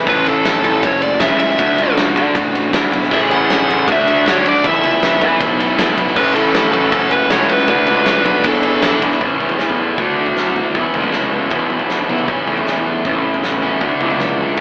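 Heard through an AM-radio sound, with a band playing live in one room and moderate studio reverb, this carefree, jangly indie rock passage in A major moves at 158 BPM over chords circling A, Dadd9 and Esus4. Up front, a big acoustic drum kit with a fat snare and punchy kick sits beside a dark, fuzzed lead guitar carrying the melody until 9.0 seconds. In the background are a growly fuzz bass, an overdriven hollow-body guitar riff and, from 3.1 seconds, a bright cranked stack guitar riff, while a very quiet, close-miked trumpet with light vibrato adds a clear second line throughout.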